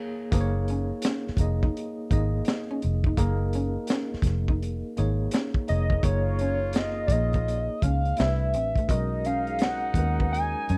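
R&B and neo-soul at 84 BPM with a swung, soulful feel, this short cut sets a worn, slightly out-of-tune tine electric piano with fast tremolo over a gritty, saturated breakbeat kit with a high-tuned snare and tight kick, a round, foam-muted fingered bass and a dark, clean hollow-body jazz guitar in the background, before a woody, warbling square-wave lead with chorus and vibrato enters at 5.7 s and a loose jazz horn section adds stabs from 6.0 s as the music moves into F# major, captured in a dry, close 1970s-style studio sound.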